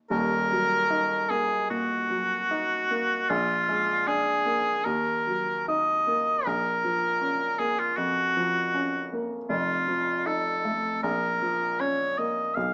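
Elegiac and yearning, this short romantic duo excerpt for oboe and baby grand piano unfolds in Eb minor at 78 BPM in 4/4, its rubato feel letting the phrases breathe freely. The piano opens at the very start and carries the accompaniment from Eb1 to Eb4, its tone intimate and natural, with audible action noise and a short sustain. From 0.1 seconds the oboe takes the melody between F4 and F5, sounding clear and classical with a light vibrato, standing louder than the piano yet somewhat distant and roomy. The harmony moves from Ebm through Bb7 and back, then shifts toward Bbm and F7 before settling on Bbm at 11.0 seconds. Light reverb surrounds the pair, and the overall sound has the character of a small speaker, with the passage cut from a longer piece.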